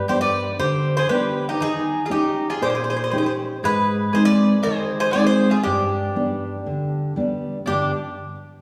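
A Greek bouzouki, a mandolin and a fingerpicked steel-string acoustic guitar sound together from the first moment of this brooding, bittersweet Greek folk fragment: the metallic, octave-doubled bouzouki carries the melody up front over the full-bodied jumbo guitar's accompaniment, while the woody mandolin adds a quieter second line, all of it ringing in the long reverb of a concert hall as the harmony moves from G through Eb7 and Ab back to G.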